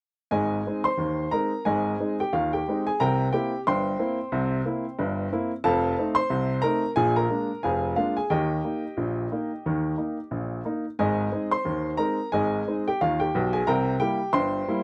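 Ragtime piano in a jaunty, lively 2/4 with a light swing, played solo on a clear, woody upright that sits intimate and up front with audible action noise, moving from Ab through C7, F7 and Bb7 to Eb and back in a dry, close 1970s-style studio sound with light reverb, in a short excerpt cut from a longer piece.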